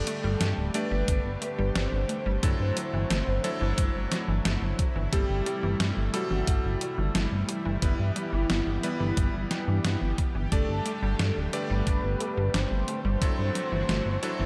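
A glossy, up-front chorused synth bass with sidechain pumping anchors this nostalgic, dreamy synthwave excerpt in G major at 89 BPM, alongside a thumpy electronic kick drum from 1.1 seconds, a detuned 8-bit digital drum machine on hi-hat and snare, a shimmering chorused pulse-width pad holding sustained chords in the background, clangy bright electric grand piano stabs with slapback echo, very quiet, punchy unison pluck arpeggios, and a velvety synth lead melody carrying chorus, tremolo, digital delay and slapback echo, the whole set in a lush hall reverb with a big arena sound as the chords move from Gsus2 through Dadd9/G, Am7/G and Em/G.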